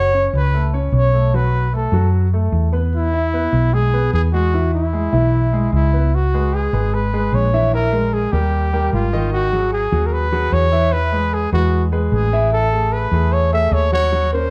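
Afro-Cuban jazz at 150 BPM in 4/4 with a straight feel, this excerpt in E major has a sunny, sophisticated mood. A breathy, close-miked trumpet carries the melody from E4 to E5, its mellow, whispered tone shaped by light vibrato, soft attacks and scooped notes, with plate reverb adding sheen to its intimate jazz-style solo. A concert grand piano supplies accompaniment with deep bass, an open character and long sustain, while a dark, round, hollow-body short-scale electric bass, fingered and amped, sits up front beneath it. All three parts play throughout the 14.5 seconds, heard from further back in a moderately reverberant studio. The harmony moves from F#m through B5 and E6, then shifts at 6.1 seconds into a second section passing through C#m7, D#, G#m7 and E before settling on Asus2.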